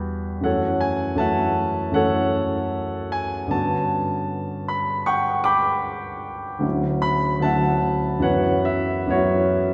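Nocturnal and mysterious, this short excerpt from a longer impressionist solo piano piece unfolds in rubato as a clear, open concert grand with deep bass and long sustain moves from F#m7 through Gmaj7#11 and Dmaj9 to F#7sus4, placed up front yet bathed in a wet concert-hall reverb heard from further back in the room.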